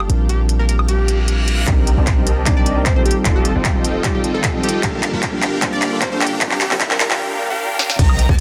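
A clean tine electric piano with tape echo opens this euphoric, bright future bass excerpt in a half-time feel, over a shimmering, ethereal pad, a deep, boomy 808-style bass and an up-front trap kit of sharp snare, crisp hi-hats, crash cymbal, handclaps and woodblock, while a catchy plucky unison lead with digital delay sits in the background. Very quiet reverse cymbal, riser and impact effects creep in at 1.0 seconds. At 1.7 seconds a punchy, layered electronic kick and huge, lush, detuned supersaw chords with phaser and a filter sweep join for a build-up full of drum fills, with sidechain pumping on the piano, pad, bass, supersaws and plucky lead. An airy, dreamy lead with chorus and vibrato arrives at 8.0 seconds on the impact, capping a dense, heavily limited modern master.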